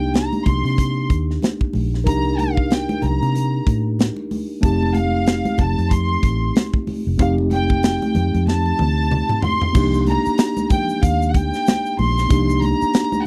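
Smooth and bittersweet, this brief cut from a longer piece is lush 1970s-style soul at 94 BPM in 4/4, with a swung sixteenth-note feel in C dorian, moving from Cm7 to F7 and back to Cm7. A violin section carries the melody with a reedy, gut-string tone and light vibrato, sitting close alongside a mellow, clean tine electric piano that supplies the accompaniment throughout. Underneath, a foam-muted fingered electric bass gives a dark, round, punchy low end, while an up-front acoustic drum kit with a punchy kick, medium-tuned snare, hi-hat, toms and crash cymbal drives the groove and plays a fill from 8.5 to 9.7 seconds. High-tuned congas with a thick-skinned tone sit in the background, and a grainy, bright tube shaker joins quietly at 9.8 seconds as the second section begins. The sound is dry and close, in the manner of a 1970s studio recording with little reverb.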